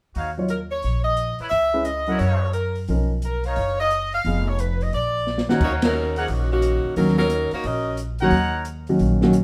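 A moderate large-studio reverb frames this sultry, swinging big band jazz excerpt at 176 BPM in Eb minor, where a bright, close-miked saxophone section with light vibrato carries the melody over a warm grand piano, a woody pizzicato upright bass and a dark, smooth drum kit with a boomy kick, while a clear, vintage trumpet section adds soft-attack stabs, and a drum fill at 5.3 seconds leads into a band accent at 5.8 seconds as the music moves into its second section.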